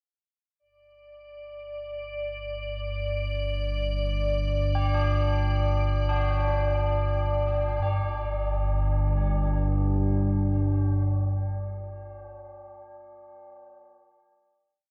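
An icy, crystalline glass pad with chorus opens this cavernous, dark ambient drone piece in free time at 1.3 s and holds a high note. An ominous, wave-folded rumbling drone enters up front at 2.4 s under a filter sweep, while solemn tubular bells enter at 4.8 s with metallic arpeggios through analog delay in two slow loops of unequal length drifting against each other, all steeped in spring reverb and an echo-heavy cassette tape sound.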